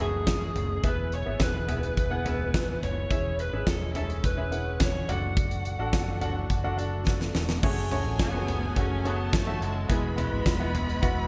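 Piano-driven pop in F# minor at 106 BPM, earnest and driving, where a clear, polished baby grand with lush chorus and an overdriven, lo-fi lead guitar carrying the melody ride over a thick detuned sawtooth pad, a dark foam-muted fingered bass and a huge arena kit with a fat snare, punchy kick and gated reverb, whose fill at 7.1 s ushers in an expressive bowed violin section at 7.6 s, all set in a small room with bright 1980s-style digital production.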